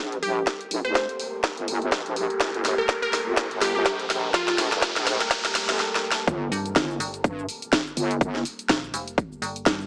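A heavy, saturated wobble bass opens this swaggering, aggressive bass house cut at 124 BPM in G minor, soon joined by a garage drum kit with a cracking snare and hats, a glassy wavetable pluck melody with dub echo, a punchy, overdriven electronic kick, a deep, moody ambient pad under sidechain pumping, and a riser and impact in the background that build to the drop at 6.3 s, where a metallic FM bass enters at 6.5 s, with the mix carrying a small-speaker sound and moderate room reverb.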